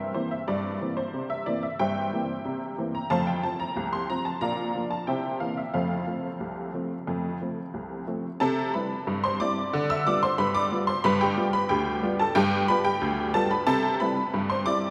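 A straight 2/4 pulse at 91 BPM drives this lively, jaunty ragtime piano piece, cut from a longer work. A solo honky-tonk upright piano plays throughout, ranging from C2 to E6, its detuned, jangly voice sitting present and up front with a vintage brightness. The first passage moves through F major, with chords shifting from C7/G to F, Bb and C7 before settling back on F. At 8.4 seconds the music turns to C major, passing through G7/D and G7 and returning to C at 13.7 seconds. A cathedral reverb with a 5.4-second decay places the piano in a vast, echoing space, so each chord rings long into the hall.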